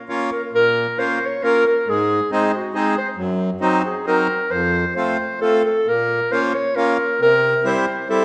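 In a rubato triple metre, this short, jolly and festive cut of alpine folk opens at 0.0 seconds with a warm, distant clarinet playing the melody in a classical style. From 0.1 seconds, a reedy, full, close-miked accordion in dry tuning supports it up front. The dark production sits in a recital hall reverb, and the harmony moves from B-flat minor toward a closing C7.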